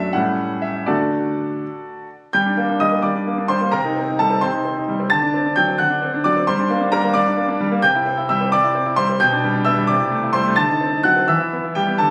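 Flowing in 6/8 at 87 beats per minute, counted in dotted quarters, the music moves with a free, rubato feel. This short classical-period piano sonatina passage in G minor is lifted from a longer piece and carries a graceful, cheerful mood. It is tuned slightly high, with A4 at 441 Hz. A solo grand piano plays throughout, ranging from F#2 up to A6, and its brilliant, up-front tone rings with long sustain. A brief opening moves from A7 to D, and at 2.3 s a longer passage begins on Gm, travels through Cm, D7, C and G/B, and reaches D7b9 before settling on Em at 11.3 s. The sound sits in a moderate recital hall reverb, captured on a phone in the room.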